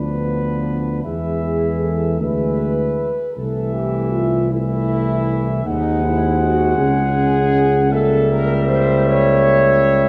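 A flugelhorn melody opens this classical, hymn-like brass band excerpt, with every part sounding together from the first second. The mood is melancholic and elegiac, moving at a slow, rubato 52 beats per minute in 6/8 and set in A minor, with tuning at A4 = 439 Hz. The flugelhorn carries the tune with a warm tone and soft attack, heard at a distance in the room, while a tight, dark French horn section supplies a prominent second line beneath it. A clear trombone and a mellow euphonium sit in the background as distant, roomy accompaniment, and an up-front tuba with a smooth top anchors the low bass. Harmonies drift through shaded chords such as Bdim/D, Am/C and G#7/D#, closing on C#dim7 at 7.9 seconds, and a moderate concert hall reverb gives the passage a spacious, solemn glow until it breaks off at 10.1 seconds.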